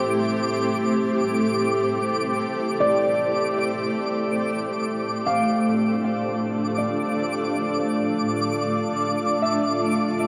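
Awash in a huge, dark reverb, this spacious, serene ambient excerpt in free time sets a cloudy, detuned granular pad up front holding sustained chords that move from Am7 to Dm at 4.5 seconds, while a thumb-plucked concert harp rings out arpeggios through tape echo in the background and a twinkling granular texture adds a sparkling octave-up shimmer high above.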